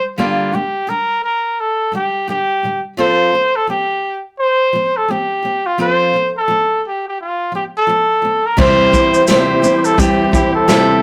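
A clear, up-front trumpet carries the heartfelt melody of this easy-going acoustic pop excerpt in F major at 86 BPM with a gentle swing, played with pop-style vibrato over a woody, picked steel-string acoustic guitar whose old strings give it a warm tone as the chords move from Gm to F. At 8.6 seconds the harmony shifts to C as a distant, roomy unplugged drum kit played with bundle sticks enters with dark cymbals, tight kick, snare and shaker, while a lightly overdriven tonewheel organ with chorus vibrato and a fast rotary speaker fills out the background. The whole take sits in a small room with a rough rehearsal-room character and warm saturation.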